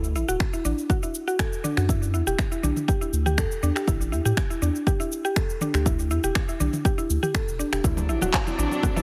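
A heavily compressed, radio-like mix with light digital reverb frames this driving afro house excerpt in E minor at 121 BPM, cut from a longer piece. A woody, mallet-like FM synth pluck sits up front playing arpeggios between D4 and A4, treated with chorus, delay and sidechain pumping. Beneath it a round, deep analog bass with a fast attack and sustained tone pumps with sidechain compression, and a punchy, layered electronic kick enters at 0.4 seconds. An afro-pop drum kit of finger snaps, handclaps, shaker and toms fills out the groove as the harmony moves from D through Em7 and A5, back to Em7 and on to D7. At 7.8 seconds a lush, bowed studio string section with vibrato adds sustained chords, and ringing acoustic congas join in the background.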